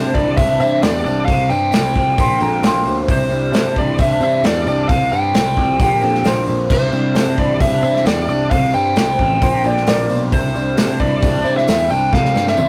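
Jangly and open-road, this short folk rock and heartland rock cut moves at 133 BPM in a straight 4/4 in C mixolydian, cycling through Cadd9, Fsus2/C and Bbadd9 chords. A bright, overdriven lead guitar carries the melody up front over a double-tracked, phaser-tinged riff guitar, a growly picked electric bass, a punchy natural country drum kit and a very quiet picked steel-string acoustic guitar, with a faint jingly tambourine and a hushed, bowed string section holding soft sustained chords beneath. A dark, woody upright piano adds brief second-line phrases, first at 2.2 seconds, and a drum fill arrives at 12.1 seconds, all captured with a rough rehearsal-room feel, saturated tone and a moderate studio ambience.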